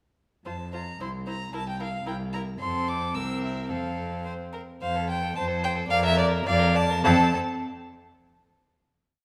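Graceful and lively, this complete quick classical-period movement for string quartet in F major moves at 110 BPM in a rubato 2/4, with a reedy, gut-string first violin carrying the melody up front over a nasal, airy-bowed second violin's repeated notes and rocking two-note figure, a rich, distant viola adding a counter-melody, and a cello holding sustained bass on the beats, all set in a wet scoring-stage reverb as the music slows from 4.3 s into a coda and a final F chord at 7.0 s.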